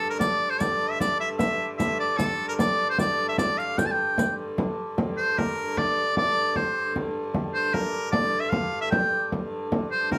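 A straight, driving triple-metre pulse carries this short medieval dance fragment, which has an ancient character. An edgy shawm sits up front with the solo melody, played with vibrato in a folk style. Beneath it a rich hurdy-gurdy holds a low drone from a single player, its bowed, keyed, wheel-driven tone nasal and reedy with an airy bow sound, heard close. A deep, large frame drum enters at 0.2 seconds, close and dry and also up front, alongside a riq whose dark jingles, struck with hard hands, sit in the background until it stops at 4.4 seconds. The tune moves into a second section at 4.6 seconds, with the band playing live together in one room wrapped in a wet studio ambience.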